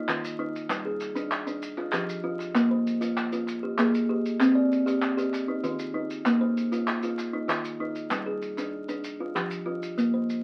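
A straight 12/8 pulse at 130 BPM in dotted quarters carries this hypnotic southern African traditional excerpt in Bb mixolydian, where an up-front, woody kalimba rings out mellow interlocking mbira-style arpeggios from Eb3 to D5 over chords such as Ebsus2, G5, Fsus2 and Gm, joined at 0.1 seconds by hollow group handclaps and quieter grainy maracas in a small room, all heard through light reverb and the crackle of a very old 78 rpm record.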